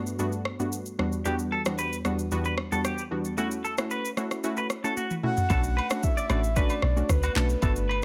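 A straight afrobeats groove from an electronic, up-front drum kit with a deep kick, handclaps, rim clicks, shaker and toms sets a sultry, smooth mood, under a crystalline, detuned wavetable pluck with a filter sweep and chorus that outlines jazzy seventh and ninth chords. A bright, compressed clean electric guitar riff with lush chorus and delay joins at 1.3 seconds, and a breathy, flute-like synth lead with vibrato floats in at 5.2 seconds. After a drum fill, a round, dark log drum bass and background agogo bells arrive at 5.5 seconds, all in light digital reverb in this excerpt of a longer piece.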